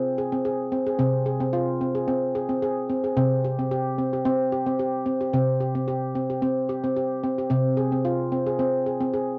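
A solo handpan rings out from the opening, its nitrided-steel tone struck with sharp finger strokes and sitting up front in a band-limited, vintage-tinged sound. This meditative, gentle world piece moves from a rootless Fm/C to C5 at 3.2 seconds and back to Fm/C at 7.5 seconds, spanning C3 to Ab4. A short, wet booth ambience and dark production surround the instrument in this brief cut from a longer piece.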